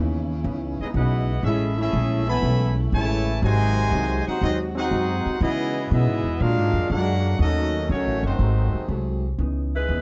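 A dark, warm production with light reverb frames this swinging, dramatic big band jazz passage in C# minor at 121 BPM, cut from a longer piece. A woody, thumpy pizzicato upright bass sits up front beside a vibrato-rich saxophone section holding smooth-topped chords, while a clean, dark hollow-body electric guitar comps in the background. At 0.8 s a bright, distant trumpet section takes the melody over a trombone second line with light vibrato, both stopping at 8.9 s before a soft-attack saxophone melody enters at 9.8 s.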